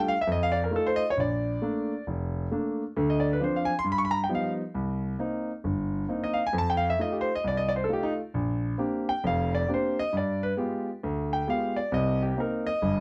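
Heard in a moderate club reverb, this sophisticated solo jazz excerpt features a warm, natural grand piano placed up front with long sustain, swinging at 134 BPM in Bb major across a range from F1 to Db6 and moving from an opening F7 through Bbmaj7, Gaug7 and Bb69 to a G7b9 before reaching Cm7 at 11.9 seconds.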